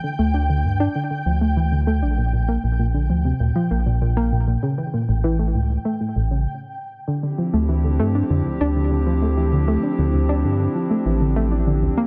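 IDM in a cerebral, intricate mood, built on a warbling, lo-fi pluck spinning dusty arpeggios through chorus, tape character and delay, over a round, deep analog bass that sits up front. For the first 6.5 seconds a bright, grainy, flickering texture hovers high above; after a brief stop, a nostalgic, detuned pad enters at 7.1 seconds with sustained chords and a slow attack. The whole piece carries a light digital ambience and is cut from a longer work.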